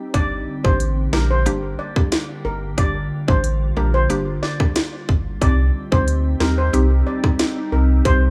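Sultry and hypnotic, this 91 BPM dancehall excerpt in G minor moves from Gm to Cm at 5.4 seconds, with a dark, shimmering steel pan melody carrying digital delay over a woody mallet-like synth pluck, a glassy, warbling FM pad with ensemble chorus and sidechain pumping, a deep, round sub bass, and an overdriven island pop drum kit with a tight kick and sharp snare sitting up front in a dry mix.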